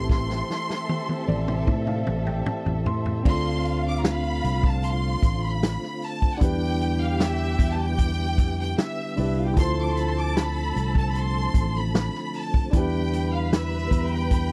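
Smooth and cinematic, this lush 1970s-style soul passage opens with a drum fill, soon joined by a grand piano fill, both running until 3.3 s, when the harmony moves into a Dm7 and Em7 vamp. A bright, intense studio violin section carries the melody from a distance, while a darker symphonic violin section sings a second line with soft-attack vibrato. These sit over a boxy concert grand piano with long sustain and a mellow tonewheel organ holding chords in the background, its fast rotary speaker, chorus vibrato and key click all audible, while a punchy fingered electric bass and a vintage acoustic drum kit with a rolled-off top sit up front in a dry, close studio sound.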